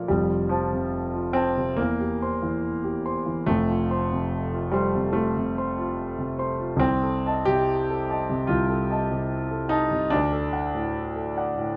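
Moving at 72 BPM in 4/4 with a supple rubato feel, this romantic character piece for solo piano carries a passionate, brooding mood. A single concert grand plays alone for the full 11.8 seconds, spanning F1 to C6, its warm tone marked by a deep bass and long sustain and placed up front in the sound. The harmony moves from F to C7/E and back to F, then darkens on Adim/C at 6.8 seconds before turning to D at 10.1 seconds. A moderate stone room reverb, about 1.3 seconds long, surrounds the instrument with a resonant sense of space. The passage is cut from a longer piece and closes on that final chord.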